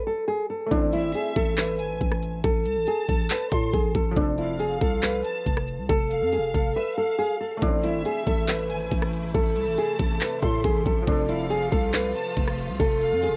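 A dark, thumb-plucked nylon-string guitar carries the melody up front from the opening of this melancholic, hard-hitting half-time trap and hip hop piece, joined at 0.7 seconds by a muted felt piano in the background, a growling, buzzy 808-style bass and a produced trap kit of knocking kick, crisp hi-hats, handclaps and rim clicks, while a lush violin section with tape echo hovers above and a distant bowed string section adds sustained chords from 7.6 seconds, with the guitar, piano, violins and strings all tinted by cassette tape and the whole mix set in light reverb.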